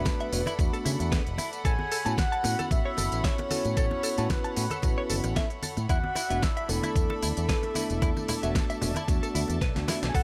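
A knocking, tape-warm electronic kick sits up front in this sunny, groovy nu-disco excerpt at 113 BPM, joined by a pop drum kit with a fat snare and crisp hats, congas in the background, and a bright fingered electric bass with an envelope filter and tube saturation. A soft, round octave-layered synth lead with chorus and analog delay carries the melody over a bell-like tine electric piano and a clean, compressed direct-recorded guitar riff, while a clear studio violin section with light vibrato holds sustained chords, the piano and violins pumping with the sidechain. The chords move from E7sus4 to A69 and back, the dry mix closing with a drum fill at 9.6 seconds.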